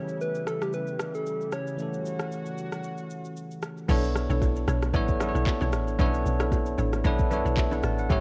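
Swung sixteenths drive this hypnotic, late-night amapiano fragment, where a bright, bell-like tine electric piano and a smooth R&B drum kit of crash, handclaps, soft kick, rim click and shaker run throughout, while a round, gentle struck synth lead with chorus and tape echo floats over a lush, airy unison pad until the drop at 3.9 seconds brings in a deep log drum bass, a hollow, bouncy square pluck in the background and very quiet, band-limited congas and bongos, the whole mix sitting in light reverb and the warbly pitch drift of worn cassette tape.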